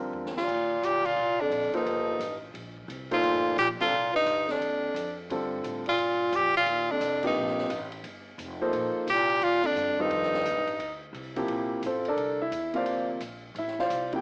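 Clear, long-sustaining concert grand piano and woody pizzicato upright bass open this hypnotic, searching modal jazz fragment as a drum fill brings in a cassette-coloured open kit with dark cymbals, a high-tuned snare and a boomy kick, joined at 0.4 seconds by a present, jazz-style tenor saxophone with light vibrato, also tape-tinged, and a mellow, subtone bass clarinet second line, both of which stop at 11.0 seconds while the swinging band, marked by scattered accents and moderate spring reverb, carries on to 14.2 seconds through a home-cassette, small-speaker sound.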